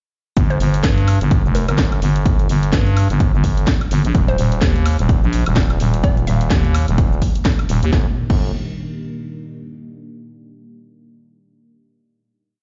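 A growling, thick FM bass sits up front in this swaggering, aggressive bass house piece, its chopped phrases given a tube-saturated bite and pumped by the sidechain from 0.4 seconds. Beside it, an overdriven, punchy electronic kick drives a four-on-the-floor pulse at 127 BPM in G minor, with a 16th-note swing. A garage drum kit sits lower in the mix, its cracking snare, programmed closed and open hats, shaker, high woodblock and crash cymbal filling out the backbeat. In the background, a hollow, bouncy square-wave pluck with chorus and tape echo plays short phrases until 6.7 seconds, while a deep, moody pad of detuned, warbling sawtooth tones enters at 2.6 seconds, softened by chorus and its own reverb. The drop moves from G minor to E-flat and back before a final G minor chord rings out from 7.9 seconds. The whole mix sounds as if played through a big sound system in a bare room with a large studio reverb, its top end dulled.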